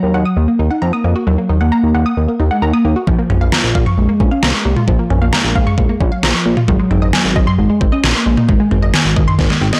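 Synth-pop with a cool, driving feel, this short cut opens on a velvety, chorused lead melody over a glossy, detuned synth bass and lush, punchy unison-pluck arpeggios washed in digital delay, before an up-front, overdriven electronic drum kit with a knocking kick and deep snare arrives at 3.1 seconds and closes with a fill at 9.4 seconds, all in a blown-out, overdriven mix with light reverb.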